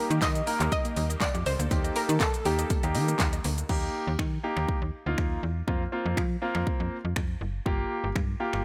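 Lightly reverberant, this driving, energetic dance-pop excerpt puts a punchy, layered pop drum kit with fat snare, metallic hats, snaps, claps, shaker and crash, a snappy, metallic-edged slap-like FM bass and an intimate concert grand piano with audible action noise, the bass and piano both pumping to the sidechain, all three up front throughout, while in the opening seconds a bright, round analog pluck with chorus and delay carries the melody over a very quiet, evolving filtered supersaw swell, a hollow, bouncy square pluck playing arpeggios and a jingly vintage tambourine, all four gone by 3.7 seconds.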